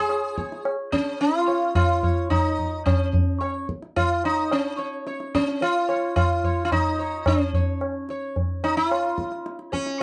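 A steady, straight 4/4 pulse at 109 BPM carries this meditative Hindustani classical passage in raga Hamsadhwani on Db, tuned to A4 = 436 Hz and cut from a longer piece. Up front, a plectrum-plucked sitar with a buzzing, shimmering, round tone and ringing sympathetic strings carries the serene melody between Db4 and Db5, while a high-tuned acoustic tabla with a short ring and a small-room sound joins at 0.1 s. Light reverb and a dark production give the whole passage a calm, intimate glow.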